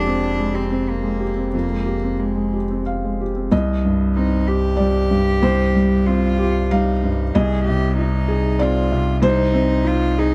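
Neoclassical piano and strings in a tender, intimate 3/4 at 94 BPM with a rubato feel, tuned to A4 = 439 Hz. The mellow, boxy felt-muted upright piano sits up front with audible action noise, carrying the accompaniment over Fmadd9 before shifting to Cm at 3.5 seconds and Ab/C at 7.4 seconds. A single bowed cello floats through as a pure, nasal sul tasto second line, while a deep, punchy sine sub bass with a pitch-drop attack sustains underneath. The whole fragment is captured with close, detailed microphones in a moderate recital hall reverb.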